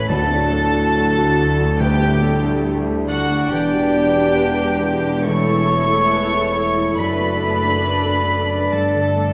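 Moving and tender, this cinematic film-score excerpt unfolds in D major at a rubato 70 BPM in 4/4, drifting from D through Gsus2/D, Em7, A/E and D/F# before coming to rest on Gsus2. A violin section carries the melody with a floating, sul tasto sweetness, shadowed by a clear, distant solo oboe with light vibrato and a dark, smooth-topped clarinet, while a second violin section sits in the background. Beneath them, a lush, woody viola section and a felt-muted upright piano provide soft, intimate accompaniment, and a mellow French horn section holds sustained chords. The bass is anchored by a dark, distant double bass section with vibrato and a gentle studio cello section. Very quiet timpani, struck with hard mallets and sounding close and dry, mark the opening until 3.0 seconds. The whole orchestra is bathed in a wet scoring-stage reverb that lends the passage a spacious glow.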